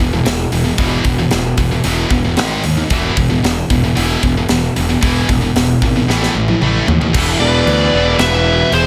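An up-front, double-tracked high-gain guitar riff opens this heavy, dark metal excerpt alongside growly, overdriven fuzz bass and a tight acoustic kit in a big room with bright cymbals and a high-tuned snare, until a drum fill at 6.1 s leads into a half-time passage where, at 7.4 s, two shadowy-toned distorted lead guitars enter, a melody on top and a quieter second line beneath it, all set in light reverb.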